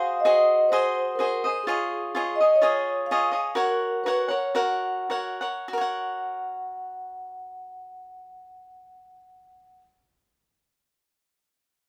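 A moderate studio ambience surrounds this short live-in-one-room recording, with a small band heard together in the same space. The piece is Mexican folk in a mariachi vein, festive and proud, set in F# major and 2/4 with a straight feel, moving between 91 and 128 BPM. A vibraphone played with soft mallets carries the melody, its mellow, ringing, metallic tone lifted by a fast motor vibrato and an airy quality. Beneath it, an up-front acoustic cavaquinho supplies picked accompaniment, bright and crisp. The harmony moves from G#7 to C#add9 and settles on F# as the music slows down between 3.6 and 5.7 seconds. A new section opens at 5.7 seconds, and both instruments carry on together until the fragment ends just before 10 seconds.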